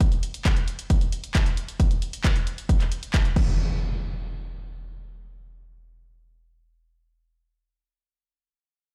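Driving and bittersweet, this short cut from a longer uplifting trance piece moves in a straight 4/4 pulse. An up-front electronic kick drum, layered and punchy, carries the beat with the close snap of a small room behind it. Beneath it sits a tape-warm analog drum machine playing crash cymbal, handclaps and hi-hat, its hats and cymbals pumping against the sidechain. Both drum parts stop at 3.5 seconds, and an up-front electronic impact takes over from 3.4 to 7.4 seconds. The whole sounds as if played on a big sound system in a bare stone room, with little reverb on the sources themselves.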